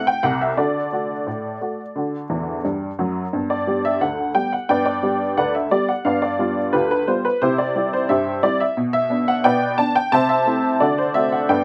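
A detuned, jangly honky-tonk upright piano opens this cheerful, lively fragment of ragtime, playing solo throughout in a straight 2/4 feel. Set up front and present in the mix, its bright, vintage tone ranges from C2 up to A5, tuned to A4 = 438 Hz. A piano fill arrives at 2.3 seconds and carries into the G chord at 3.3 seconds. The harmony moves from Am and D through G and G7 to C, then passes through Bmadd11 and Am/C before landing on D7. The sound is dry, captured outdoors with little reverb, and the clip is cut from a longer piece.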